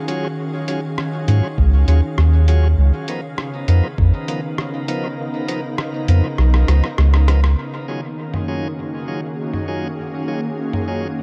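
A deep, round sub bass sits up front in this meditative, spacious ambient dub excerpt, holding low notes from 1.3 s to 7.6 s beneath a pure, detuned organ-like pad whose chorused, reverberant chords move between Ebm11 and Db13. Stabs from a shouting, lightly overdriven tonewheel organ with a stopped rotary speaker ring out through dub echo. A muffled, pitched-down sampler drum kit of hi-hat, rim click and toms is joined for a stretch by a thumpy, tape-warm electronic kick, and a drum fill at 6.4 s leads into a band accent before the echo-heavy mix settles back on the opening chord.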